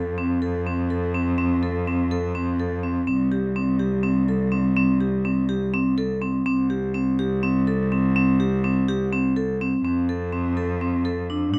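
A metallic, ringing vibraphone played with hard mallets and its motor off spins bright arpeggios up front in this shimmering, hopeful excerpt of contemporary chamber music in 7/8. Beneath it, a single bowed cello carries the bass line up front with a rich, focused tone, a smooth top and vibrato, captured close and detailed in light reverb. The harmony moves from F to C5 and settles back on F as a new section begins at 9.8 seconds.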